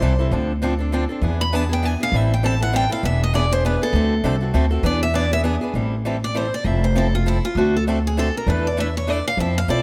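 A fiery, swinging gypsy-jazz waltz at 199 BPM opens at once with a bright, fresh-stringed parlour guitar soloing up front, a boxy swing-style rhythm guitar with audible finger squeak, and a woody, thumpy pizzicato upright bass on dark gut strings. The lead guitar solos across both passes of the theme, over changes that move from Dm7 and E7 through Am7, Fmaj7 and D7 before reaching E7sus4 at 8.5 seconds. Close, detailed miking and a light reverb keep the playing intimate in this short cut from a longer piece.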